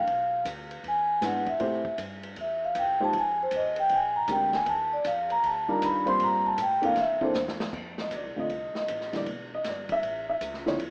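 A warm, swinging 4/4 pulse at 157 BPM drives this short cut from a longer small-group jazz piece in F major, with the eighth notes given a relaxed lilt. A vibraphone played with soft mallets and the motor off carries the melody up front from the start, its dry, close tone mellow and ringing, until it stops at 7.3 seconds as the drums play a brief fill. Beneath it, a pizzicato upright bass sits low and woody, while the acoustic kit in a small room offers a punchy kick, a medium-tuned snare and dark, smooth cymbals with a rolled-off top. From 1.2 seconds an upright piano comps with an intimate, vintage character, slightly detuned and with its action noise audible, moving through harmony such as Ebmaj9, Gm11 and C13 before landing on F6. Light reverb and a rough home-demo mix give the recording a small-speaker sound.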